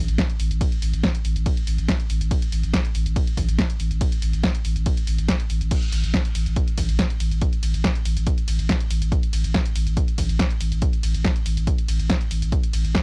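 A straight 4/4 pulse at 141 BPM drives this dark, hypnotic slice of peak-time techno, which is cut from a longer piece and stays at full drop intensity throughout. A punchy, tape-warm electronic kick sits up front from 0.2 s, joined by an analog drum machine supplying a punchy snare along with hi-hat, ride and crash cymbal. Underneath, a deep, thick sub bass with a triangle-like tone, fast attack and saturated grit holds around A1. It pumps with sidechain compression and is shaded by a low-pass filter. The same material repeats from 5.7 s, and the cassette home recording adds light reverb and a gritty, lo-fi sheen to the drums.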